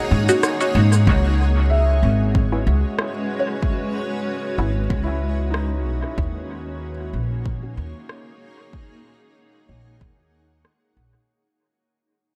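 A woody, thumpy pizzicato upright bass sits up front with tube saturation in this deep, meditative ambient dub excerpt at 94 BPM in C# dorian, its gently swung 4/4 groove moving between D#m7 and C#m7. A blurred, evolving granular cloud pad holds sustained chords, while a felt-muted upright piano with audible action noise plays soft arpeggios in the background through dub echo until 6.9 seconds. Muted, detuned chord stabs with phaser, analog chorus and 12-bit grit join electronic cabasa and rim click, an overdriven deep kick enters at 1.1 seconds, and the echo-heavy mix fades out from there to the end.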